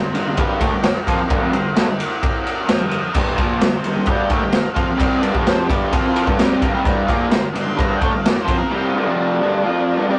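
This rough rehearsal-room recording sits in a small room with moderate reverb, its sound topping out at 10.4 kHz, and it is cut from a longer piece. It is swaggering, raw garage rock for a duo or trio, moving at 130 BPM in a straight 4/4 and holding on G minor throughout. Up front, a bright, overdriven electric guitar plays a picked, double-tracked riff, alongside an acoustic drum kit with a boomy kick, a medium-tuned snare, dark crash and ride cymbals and a gritty, pumping room sound, which drops out at 8.6 seconds. Further back, an octave-fuzz lead guitar carries the melody in a dark, distorted tone, while a vintage combo organ holds clean, buzzy sustained chords with light vibrato.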